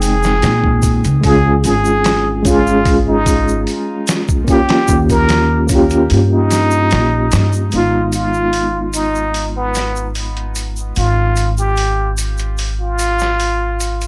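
Dark and cinematic, this trip hop excerpt moves at 74 BPM in a straight 4/4, cut from a longer piece and held together by a dry, gritty hardware sound with transformer saturation. Up front, a plunger-muted trumpet carries the jazz-style solo melody with a breathy, wah-wah tone, soft attack and vibrato, its line trailed by tape echo. Beneath it, a mellow, reedy electric piano plays the chords through its built-in speakers with a fast tremolo, a low-pass filter and tape echo, and filter sweeps run across it from 0.0 to 7.7 seconds and again from 7.7 to 14.1 seconds as the harmony shifts from Fm7 through Db and Eb7 to Abm6. A woody, dark pizzicato upright bass sits close in the mix, while a sampler-style kit, pitched down, compressed and overdriven, supplies a thumpy kick, medium-tuned snare and hi-hat in a small room. The kick drops out from 6.1 to 7.7 seconds before the second section begins, and a close, dry tube shaker with group handclap adds a faint layer of acoustic percussion.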